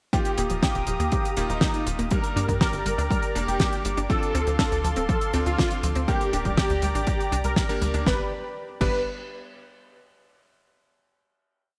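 Nostalgic and bittersweet, this short italo disco piece rides a punchy, overdriven electronic kick playing four-on-the-floor, a dry, damped 70s drum kit with a fat snare, closed hi-hat and crash, and a tight sequencer bass galloping in sixteenths from 0.4 seconds. A thick, detuned unison lead with vibrato and a tape-worn ensemble chorus repeats a riff melody over a smooth analog pad with soft attack. Beneath them, a round analog pluck runs an eight-step arpeggio and a clangy electric grand piano adds held chords with syncopated pushes, both set back with digital delay, in a bright 1980s-style digital production with lush hall reverb that settles on a closing G chord at 8.1 seconds.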